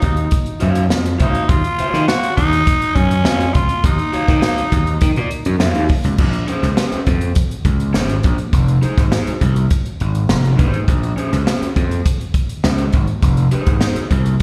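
A straight 4/4 funk groove at 102 BPM in Bb minor, driven by a punchy, overdriven slap bass and an airy, polished big-band drum kit with crash, hi-hat, kick and snare, sets a sly, cool mood in this excerpt from a longer piece. A raspy, growling tenor saxophone with light vibrato and slapback echo carries the melody up front until 5.6 s, while a raw, picked garage guitar with overdrive and slapback echo comps underneath from 0.6 s over chords moving from Ebm9 to Bbm9 and Fm7. The whole thing has the feel of a live gig heard through the venue's PA, with light club reverb.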